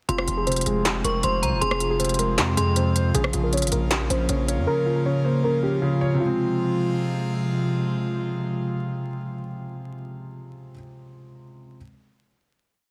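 An eerie, menacing trap piece opens at once with a clanging, half-time industrial beat of crisp hi-hat rolls, rim clicks and a snare layered with handclaps, set up front beside a distorted, saturated 808 bass that holds long sub notes with pitch slides. Over a dark, mellow grand piano arpeggio looped with audible action noise and a breathy, detuned pad, muted felt-like synth keys repeat a soft looping melody, while a metallic, warbling FM bell adds a sparse counter-line through digital delay. The drums and bass drop out by 4.7 seconds, and a final chord arrives at 6.2 seconds, with the piano outlasting the pad and ringing on until 11.8 seconds amid vinyl crackle and a dense, heavily limited master.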